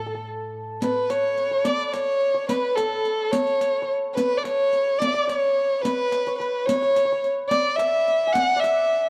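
This is a Persian modal ensemble piece, cut from a longer work, with a passionate, festive mood at 72 BPM in a straight 6/8, tuned to A4 = 439 Hz. A dark, woody bowed violin carries the melody up front from the start, played by one player with vibrato and a sul tasto touch, and its part has a cassette tape coloring. Alongside it, a hammered acoustic santur plays a second line in a shimmering, ringing voice. A rich, earthy bowed double bass holds a brief drone on A2 with an airy, nasal, boxy tone, sounding only until 0.9 seconds. The riq enters at 0.8 seconds with hard hands and dark jingles, heard as though in a small room. The whole is a home recording on cassette with light studio reverb.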